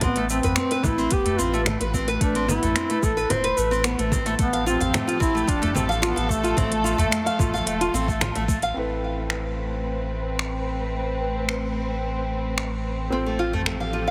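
Heavily compressed with a boxy, radio-like squeeze, this short section from a longer organic downtempo piece sits in a small room with light reverb and feels mystical and hypnotic in a straight, steady four. A mellow duduk carries the folk-style melody with vibrato and a gentle attack, its line echoed by delay, while an up-front nylon-string guitar fingerpicks warm arpeggios that also trail off through delay. Underneath, a dark studio string section holds bowed sul tasto chords with a smooth top and 12-bit sampler grit, pumping against the kick alongside a round, sine-like sub bass. A deep electronic kick anchors a tape-warm kit of congas, finger snaps, crisp hi-hat and shaker, and a small udu sounds in the background. The duduk falls away at 8.5 seconds and a soft, felt-muted upright piano takes over the accompaniment from 8.7 seconds, pumping and echoing, before the guitar briefly returns at 13.1 seconds.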